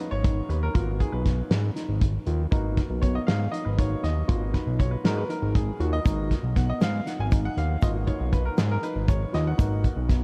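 A clear, intimate baby grand piano with audible action noise leads over clean tine electric piano arpeggios, joined almost at once by a fat, detuned sawtooth analog bass and a loose acoustic indie drum kit with a fat snare and tight kick, while a grainy, very quiet egg shaker enters at 6.1 s in this driving, brooding progressive excerpt in 7/8, all soaked in cathedral reverb with a dreamy cassette-tape haze.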